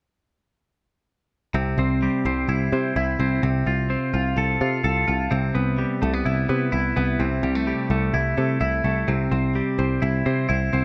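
At 1.5 s a bright, twangy twelve-string electric guitar enters with compressed, clean arpeggios touched by tape echo, alongside a round, dark, foam-muted picked electric bass, both sitting up front. This youthful, breezy jangly indie pop fragment moves at 127 BPM in a straight 4/4 in C major, with the chords shifting from C through F/C, Em/C and Am7/C before returning to C at 9.1 s. A moderate club reverb gives the pair a sense of space until both stop at 10.8 s.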